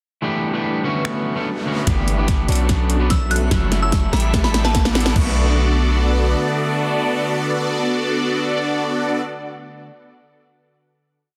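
A big, bold polysynth built from detuned sawtooth waves leads this brief, emotional and bittersweet future bass piece, playing dotted-rhythm chords through chorus, phaser, tape echo and sidechain pumping. The music moves at 146 BPM in a half-time 4/4 feel in B minor, passing through G6, Bm7, F#m7 and A7sus4 before settling on a final Bm7 at 5.2 seconds. Beneath it, a slightly broken-up, twangy electric guitar picks rootless chords with its own echo and pumping, while an airy, breathy pad holds very quiet sustained chords. A faint riser begins marking the transitions at 1.0 seconds, and a dubstep kit with a huge snare, finger snaps, bright hi-hats with rolls and crash enters at 1.1 seconds. From 1.9 seconds a deep, boomy 808-style sine bass and a knocking electronic kick join to drive the build. A crystalline FM bell adds short, warbling phrases with tremolo midway through the build, and the dense, heavily limited master carries light digital ambience.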